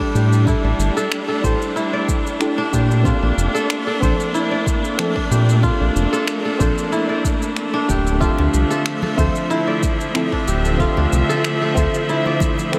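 A meditative organic downtempo excerpt opens with a dark chord stab in the background, colored by chorus, cassette tape and a diffuse delay, alongside a rich bowed string section with vibrato, crisp, ringing fingerpicked kora arpeggios, and an overdriven deep electronic kick, while a round analog bass sits up front, both strings and bass sidechain-pumped like the stab, over faint overdriven electronic shaker and finger snaps, with close, dry congas joining at 8.4 s, all in a dreamy mix soaked in huge ambient reverb.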